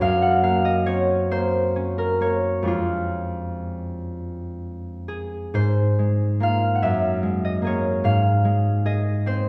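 Mysterious and gentle, this brief classical solo for concert harp drifts in a rubato 6/8 at 40-51 BPM through seventh and added-note chords before settling into Ab major at 5.5 s, its ringing, fingerpicked tone sitting up front within the long, wet bloom of a recital hall heard from further back in the room.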